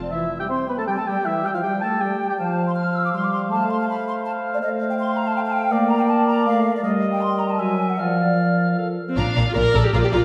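A dark recording set in a reverberant scoring stage gives this quick classical-period orchestral movement in triple time a spirited, graceful character, with a freely flexing rubato feel. For roughly its first nine seconds the woodwinds and brass carry it: an airy, hollow flute section sings a high second line with vibrato and crisp attacks, while a soft-edged solo clarinet and a distant, roomy cor anglais add their own second lines beneath. An up-front French horn section holds mellow sustained chords underneath, moving through a classical harmonic progression with one colourful chromatic chord along the way. At 9.1 s the strings take over, the viola section entering just ahead of a brief new section that begins at 9.2 s: violins carry a lush, expressive bowed melody with a second violin line close beside it, and the even, smooth viola section sits prominently in the accompaniment. A focused cello section and smooth, even double basses anchor the passage with a bowed bass, and the clip, cut from a longer piece, ends at this string entry.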